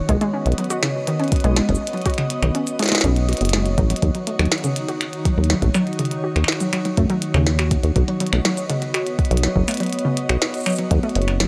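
Set in a light digital ambience, this cerebral, intricate IDM piece at 122 BPM in 4/4 rides a rubbery, resonant acid bass up front beneath a glassy, ethereal FM pad with ensemble chorus and built-in reverb, while a warbling, detuned lo-fi pluck with lush chorus, cassette tape character and tape echo spins arpeggios, a soft electronic kick and a glitchy kit of tiny snare, clicky hats, finger snaps and shaker keep time, and a drum fill at 3.8 seconds leads the chords from Badd9 to D#m7 and back.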